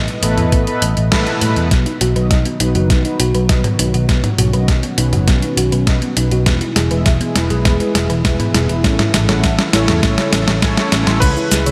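Moody and nocturnal, this synthwave fragment, cut from a longer piece, sets a warm, smooth analog pad with a sub octave and sidechain pumping under a dark, round picked electric bass and mellow, detuned synth brass stabs coloured by chorus and tape echo. An overdriven, thumpy electronic kick and an up-front 12-bit drum machine with cabasa, hi-hat, snare, toms and crash hit a band accent at 1.1 seconds. At 1.7 seconds a tine-like, FM thumb-piano-style pluck begins arpeggiating over the B, E and A chords while a drum fill runs, and a clear, vintage electric grand piano touches a single note at 11.2 seconds, all inside a lush hall reverb.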